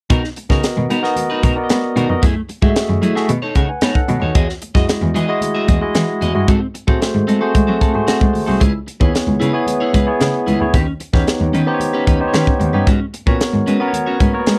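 A tight funk drum kit, a bowed cello, a twangy electric guitar and faint congas all start together in this glossy, upbeat slice of polished 1980s jazz-funk pop, cut from a longer piece. The acoustic kit sits up front with a high-tuned snare and a tight kick, while the congas ring softly in the background at a very low level. The cello carries the bass line, played sul tasto by one player with a soft attack and a pure, floating tone. The guitar plays a bright, slightly broken-up picked riff with a scooped sound and a subtle chorus. From 0.5 s a barky, lightly overdriven tine electric piano joins as accompaniment through a combo amp, bathed in lush chorus and adding fills at 3.3 s and 7.5 s. The jazzy harmony moves from Bmaj7 through chords such as Emaj9, G#7b9 and D#aug7 to G#m11, all captured in a dry, close 1970s-style studio sound.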